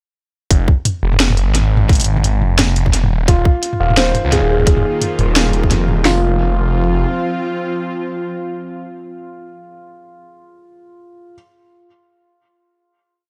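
Heavy and spacious, this half-time drum and bass piece in F minor at 173 BPM pairs a swirling, saturated detuned saw bass playing long dark notes with two up-front electronic drum kits, one with a tight kick and cracking snare and the other a sparse beat of closed hat, low tom and snare through tape echo, while a muted felt upright piano adds a repeating dub-echoed arpeggio from 3.3 seconds, a tense string-like drone with vibrato, sampler grit and sidechain pumping enters at 4.1 seconds, and that drone rings on into the final chord after the drums stop at around 6 seconds.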